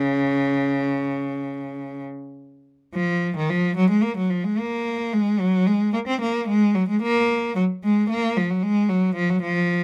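A single bowed cello opens this brief cut from a longer baroque-style suite movement, its rich, focused tone and vibrato placed close and up front in a dry, detailed recording. In Bb minor and 12/8, the flowing, introspective line moves with rubato at roughly 67-76 BPM in dotted quarters, staying between Db3 and C4. The opening phrase returns at 2.9 s and carries the solo through to 9.8 s.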